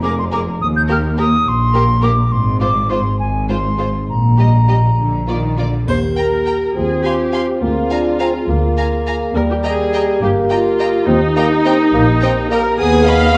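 A pure, crisp-attacked flute sings up front until 5.6 s over a rich, distant violin section carrying the melody, a clear second violin line, an up-front viola section, and lush bowed cellos and double basses in this mischievous, whimsical Eb-major film cue in a straight 6/8 at 70 BPM, before mellow French horns and a faint triangle arrive at 5.9 s and a gently vibrato bassoon joins at 6.8 s, all bathed in recital-hall reverb and the warbling pitch drift of a worn cassette tape.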